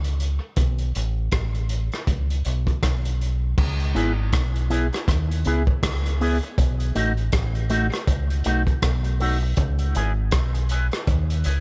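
Swung sixteenths in 4/4 drive this heavy, spacious dub reggae excerpt, where a gritty, saturated breakbeat kit of tight kick, rim clicks, hi-hat and dark crash sits up front beside a round, punchy fingered bass through an opening break, before a bright, twangy envelope-filtered guitar with analog chorus and dub echo enters at 3.9 seconds and carries a filter sweep from 6.6 seconds over C#m7 and B7 chords, all set in a small room.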